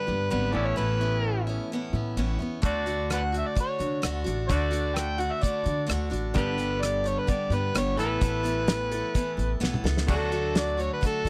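Folk rock and heartland rock at 129 BPM in D major with a nostalgic mood, this short excerpt from a longer piece sets a gritty, overdriven harmonica melody with vibrato, tongue slaps and scooped notes up front over a bright, boxy picked parlour acoustic guitar, a clean, twangy electric guitar riff and a woody pizzicato upright bass, while a damped 1970s drum kit with a fat snare and tight kick enters at 2.6 seconds and plays a fill at 9.6 seconds, all captured in a dry, close studio sound.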